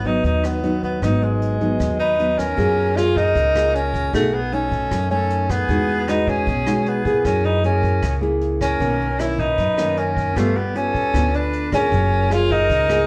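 A breathy tenor saxophone carries the melody up front in this wistful, smooth bossa nova fragment, its whispered subtone, soft attack, scooped notes and vibrato wrapped in plate reverb. A thumb-plucked nylon-string guitar and a woody pizzicato upright bass move through changes such as G#m7, F#maj9 and B13, while a brush drum kit with a punchy kick, rim clicks and a rolled-off top sits low in the mix. From 2.0 s a bright metal jazz flute adds a quiet second line with crisp, chiffy attacks, and the band sounds set back in a reverberant studio room.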